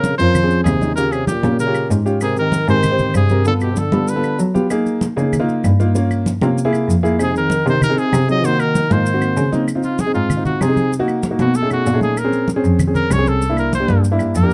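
A clear, lightly vibrato trumpet and a breathy, whispered trombone open this lively, sophisticated Afro-Cuban jazz passage at 193 BPM over a dark, up-front grand piano, a distant, reedy bowed cello on bass, damped congas, grainy maracas and woody claves, with the trombone stopping at 9.5 s and the trumpet taking a solo in Db major from 9.7 s in a lightly reverberant, dark, warm production.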